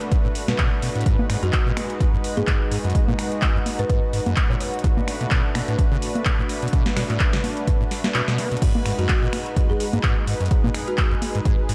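Acid house with a driving, gritty feel and a light swing, this excerpt rides on a punchy, tape-warm electronic kick up front, which drops out briefly at 8.1 seconds, alongside a booming analog drum machine with crisp snare, metallic hats, handclaps, finger snaps, congas and crash cymbal. A squelchy, resonant sawtooth acid bass riff with filter sweep, tube saturation, cassette grit, analog delay and sidechain pumping churns beneath a lush, thick, nasal unison pad of detuned saws, whose bright, chorused chords move between Bm7 and G#m7 and pump with the kick. In the background, a dry, woody folk marimba melody with analog delay enters at 1.4 seconds, and the whole mix is soaked in a dreamy hall reverb.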